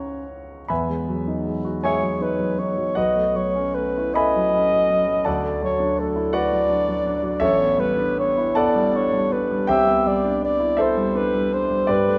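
Classical impressionist duo in E major, a dreamy, pastoral passage cut from a longer piece, unfolding in a rubato 6/8 at roughly 49-56 dotted-quarter beats per minute. A mellow alto saxophone carries the melody up front in a classical solo style, with light vibrato, a soft attack and a smooth top, while a warm, natural-sounding concert grand piano with deep bass accompanies through lush extended harmonies such as Emaj9, B9sus4, Dadd9, A9sus4 and Cmaj9. Both play throughout the 12.2 seconds, set in a moderate scoring-stage reverb.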